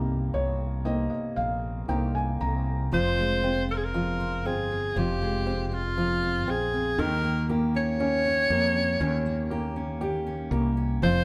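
A moderate stone-room reverb surrounds this short cut from a longer pop ballad, which sounds like a band playing live together in one space. The mood is emotional and heartbroken, moving slowly at 59 BPM in a straight 4/4 in F minor. A felt-muted upright piano, soft, intimate and vintage in tone, opens with a fill over Cm7 and sits up front alongside a round, dark fretless electric bass. A fingerpicked steel-string acoustic guitar adds full-bodied jumbo arpeggios throughout. At 2.9 seconds an edgy alto saxophone enters with a pop-style solo melody, colored by vibrato and placed up front, as the harmony moves to Fm and then to Eb7 at 7.0 seconds.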